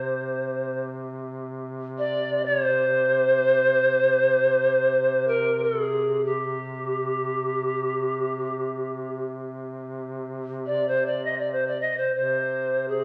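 Bathed in the wet reverb of a recital hall, this passage cut from a longer Caucasian folk lament unfolds in free time with a mournful, longing mood from 0.0 to 13.0 s, as a bright, reedy pan flute carries the melody up front between G4 and Eb5 with soft-attack vibrato, while a warm duduk holds a low C3 drone beneath it with scooped notes and its own vibrato.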